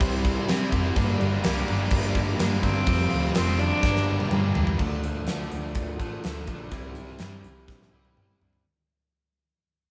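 Recorded as a band playing live in one room with moderate reverb, this brooding, angsty quiet-loud alternative rock excerpt at 125 BPM is driven by a huge arena drum kit, up front with bright cymbals, a fat snare and punchy kick, over a dark, round hollow-body picked bass. Two background electric guitars, one distorted and compressed and the other overdriven, join a double-tracked fuzz guitar in riffs over Cadd9, Gm and Fsus2, while a mellow vintage string machine holds sustained cello chords and a reedy, gut-string bowed cello sings a melody from 1.0 to 4.3 seconds. At 4.8 seconds the music shifts to Dm and begins to fade, leaving the drums, bass and one distorted guitar beneath lo-fi, slightly broken-up fingered arpeggios from a guitar through a small old amp with phaser.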